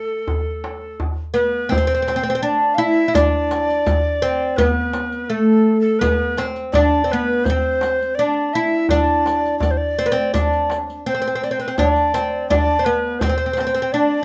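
A bright, woody fretless oud plucked with a plectrum carries a soulful, hypnotic Turkish makam melody up front. A breathy tenor recorder with vibrato and a chiffy attack adds a higher second line, while a crisp, deep metal-shell darbuka played with hard hands drives the straight 4/4 pulse, and a softly played riq with bright jingles joins in the background at 1.7 s, all set in a small room in this fragment of a longer piece.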